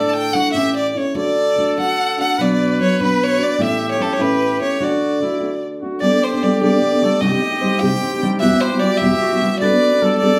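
A biting, vibrato-rich solo violin carries the melody up front with a slapback echo in this proud, romantic mariachi folk passage, cut from a longer piece, in a loose, rubato 6/8. A clear, classically styled trumpet plays a softer second line beneath it, while a dark, thumb-plucked nylon-string guitar provides prominent accompaniment. At 6.0 s the music shifts to a new section and a ringing concert harp enters in the background with fingerpicked arpeggios, all set in a reverberant studio heard from further back in the room.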